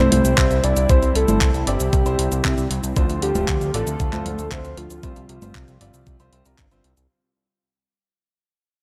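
A dry, close sound with little reverb frames this short, romantic and playful italo disco fragment, which fades out across its whole 7.1 seconds. A fat, nasal analog bass sits up front, its detuned sawtooth and square tones thickened by tube saturation and a plucky filter attack. Beside it, a clean 12-bit drum machine, tape-toned and re-recorded in a small room, lays down cabasa, congas, handclaps and hi-hat, while a thumpy sampler-style electronic kick joins at 0.4 seconds as the loudest part. The soft, octave-layered synth lead carries the melody with a full, round triangle-and-sine tone, wave-folded edges, vibrato, chorus and digital delay. In the background, a smooth, detuned analog pad with chorus holds sustained chords and a clear, open concert grand piano adds deep-bassed stabs, as the harmony moves from C to Dm7 and on to Csus4.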